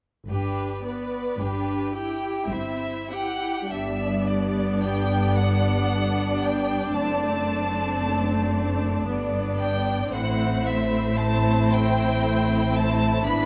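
Up front, a violin section bowing the second line sings with soft attacks, expressive portamento and vibrato, while another violin section carries the melody above it in a focused, smooth-topped tone. This is a slow, tender romantic movement for string orchestra in G major and 3/4, moving with rubato between 47 and 60 BPM, and it is cut from a longer piece. A viola section fills out the accompaniment with an even, vibrato-rich sound. A lush cello section sits in the background beside a clear, intense double bass section with light vibrato. All five sections play together from 0.3 s to 13.5 s, as the harmony moves from G to C over G, then G, D7 over F#, back to G and finally A minor. Close, detailed microphones are set within a moderate concert-hall reverb.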